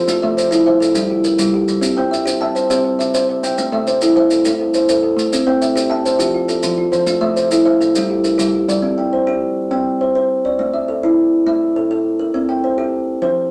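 In a moderately reverberant studio sound, this hypnotic, rippling southern African traditional mbira-style interlocking cycle in C mixolydian moves at 137 BPM in a straight 12/8, with an up-front, ringing, airy kalimba built on a hollow box spinning arpeggios throughout, a second, quieter kalimba on a solid board adding short, woody arpeggios in a boxy small room until 9.1 seconds, and close, dry, grainy maracas playing softly until 8.8 seconds, leaving the first kalimba alone from 9.1 seconds through the rest of the open C5, A5 and C5 chords before this cut from a longer piece ends.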